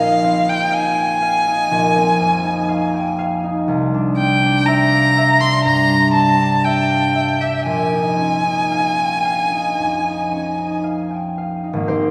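Classical impressionist duo for violin and harp, luminous and dreamy, moving in a rubato 4/4 at about 56-61 BPM through Fm7/Bb, Cadd9 and Bbm11 chords. Up front, a single bowed violin carries the melody between E5 and C6 with a rich, focused tone and vibrato until 10.8 s, while the fingerpicked concert harp rings out its acoustic accompaniment across a broad range and lasts until 12.1 s. A lush church reverb with a 3.1-second tail surrounds this short excerpt from a longer piece.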